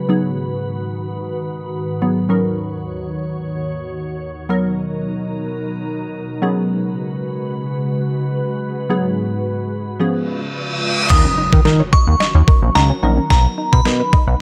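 A dark, crystalline wavetable pluck and an ethereal FM pad with lush ensemble chorus and sidechain pumping open this bittersweet yet confident dance-pop excerpt in Eb minor at 109 BPM, cycling through minor-seventh, major-seventh and suspended chords. A reverse cymbal rises at 10.4 seconds into an electronic impact. At 11.1 seconds the build-up arrives with a warbling, bright FM bell melody with tremolo and dub echo, a punchy detuned sawtooth arpeggio in the background, a glossy, nasal chorused synth bass up front, and a thumpy, overdriven 8-bit drum machine playing a fill on kick, snare and crash, all in a dry, close mix.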